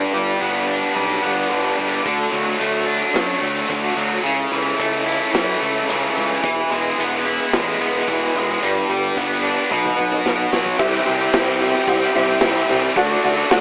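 Classic rock at 110 BPM in 4/4 with a swaggering, driving mood, cut from a longer piece and tuned slightly low to A4 = 436 Hz. A bright, double-tracked distorted guitar sits up front with a tight picked riff. A fuzzy, overdriven electric bass and a tonewheel organ holding full sustained chords through chorus vibrato and a slow rotary speaker play beneath it. A vintage drum kit enters at 2.1 seconds in the background, with dark cymbals, a medium-tuned snare and a tight kick, playing in half time until a drum fill leads into a new section at 10.8 seconds. There a detuned, jangly honky-tonk upright piano joins with accompaniment, and the chords move from G through D, A/C#, E, G and B to C and D. The whole mix has a telephone quality with a light studio reverb.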